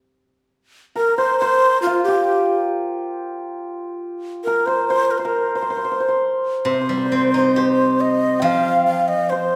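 Chinese traditional music for a small chamber ensemble, this tender and graceful excerpt moves at a free, rubato 68 BPM in 2/4, set in the C yu mode. A breathy, end-blown bamboo xiao carries the melody from 1.0 seconds, its crisp attack, vibrato and unsteady tone captured close and up front. Alongside it from the same moment, a hammered dulcimer plays a second line with a shimmering, ringing brightness. At 6.6 seconds a steel-string zither enters with accompaniment in the lower register, its fingerpicked notes silvery and ringing. The three parts sit forward in a reverberant recital hall whose 1.4-second decay lends the passage an airy, spacious bloom before it is cut off at 9.6 seconds.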